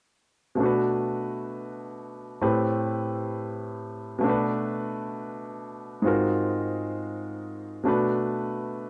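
Jazz piano piece, romantic and tender in mood, with a swung lilt in 4/4. A single concert grand carries the accompaniment from 0.6 to 8.9 seconds, ranging from Ab2 up to B4. Its tone is clear and polished, with a deep bass and short sustain, sitting up front and present in the mix. The harmony moves through Bm7, Am7 and back to Bm7, then passes through Ab13 before settling again on Bm7. Light reverb gives the room a soft glow around this brief fragment cut from a longer piece.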